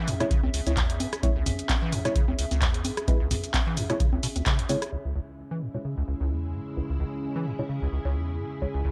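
Acid house at 130 BPM in C# minor, driving and trippy, built on a squelchy, resonant square-wave acid bass riff with overdrive and tape echo, pumping against a deep analog kick and a punchy drum machine of congas, handclaps, hats, rim clicks, shaker, toms and crash, all filtered and re-recorded in a large room. A nasal, dark chord stab with cassette-tape grain repeats on a C#m chord over a warbling, lo-fi pad, and a band accent hits at 4.5 seconds. At 4.9 seconds the drums drop away as a lush string machine enters with phaser and 12-bit grit, while a filter sweep moves across the stab through to the end of this excerpt.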